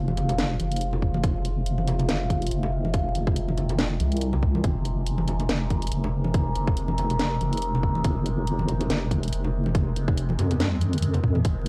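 A deep, dark wobble bass with a soft triangle-and-sine tone sits up front, sustaining on F minor beneath a resonant sawtooth drone whose overtones move through chorus, phaser and reverb, roughened by vintage 12-bit sampler grit. From 1.0 seconds a tight, tape-warm kick joins the cracking snare, hi-hat and toms of a garage kit in a swung half-time groove, while bright, saturated congas and bongos ring out with dub echo. This meditative, heavy slice of deep dubstep has a dry, gritty hardware sound with vinyl crackle, and it closes with a drum fill from 10.6 to 11.4 seconds.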